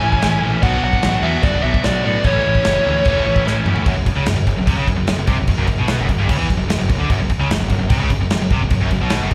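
Heavy metal, epic and relentless, heard as a live club gig through the venue's PA, with a dark high-gain lead guitar carrying the melody through slapback echo and delay while a high-gain rhythm guitar riffs beneath it until 3.8 seconds, a scooped guitar in the background and a tight double-tracked guitar riffing throughout over a punchy, fuzz-overdriven picked bass, and an up-front acoustic drum kit with bright cymbals, china and crash playing a fill at 3.5 seconds before the harmony shifts to F#5 at 3.9 seconds.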